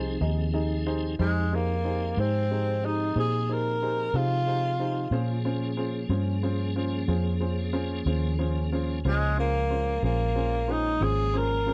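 A dry, close 1970s-style studio sound frames this brooding, smoky slow blues in 12/8 at 61 BPM, where a woody, slightly detuned upright piano and a piping tonewheel organ with key click, light overdrive, chorus vibrato and a slow rotary speaker carry chords from Fm7 to Bbm7 at 5.1 seconds, a dark, round, foam-muted electric bass sits up front, and from 1.2 seconds a soft-attacked tenor saxophone with vibrato plays a warm, roomy, jazz-style solo.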